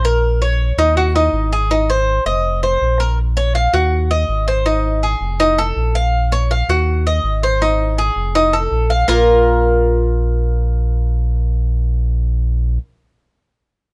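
Latin music in the Cuban son and guajira tradition, this short cut from a longer piece moves at 163 BPM in a straight 4/4 in Bb minor, with a danceable yet nostalgic mood. A Cuban tres plays arpeggios from Bb3 to F5 throughout the 12.8 seconds, its picked double strings sounding acoustic and metallic, with some strings doubled at the octave, and it sits up front in the mix. Beneath it, a sub bass with an octave layer holds down the low end between F1 and Eb2, its deep, full tone blending sine and triangle shapes with a fast attack and sustained notes, also placed up front. The harmony cycles through Bbm, Ebm, Ab and F chords, with the second and third passes turning to F7 before settling on Bb5 at 9.1 seconds. Light reverb and a dark, warm production wrap the two parts together.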